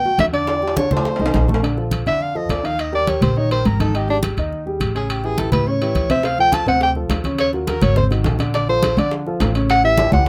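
A mellow soprano saxophone sits up front in this sunny, sophisticated stretch of Afro-Cuban jazz, taken from a longer piece, its soft attack, light vibrato and scooped notes gliding over a smooth top as it takes a jazz-style solo from 1.6 seconds onward. Beneath it, a woody, dark upright bass with steel strings is plucked throughout, while a dark grand piano adds natural, mellow accompaniment with short sustain. The percussion is bright and lively: close, dry, medium-tuned congas with a thin skin play alongside ringing metal-shell timbales, and tight, high-tuned bongos played with hard hands sit further back with a compressed, saturated edge. The bongos drop out after 1.6 seconds and return at 6.2 seconds, and drum fills arrive at 0.5 seconds and in the final moments. The harmony moves through jazzy changes such as Bbmaj7, Ab9 and A7, and light reverb gives the feel of a band playing live in one room.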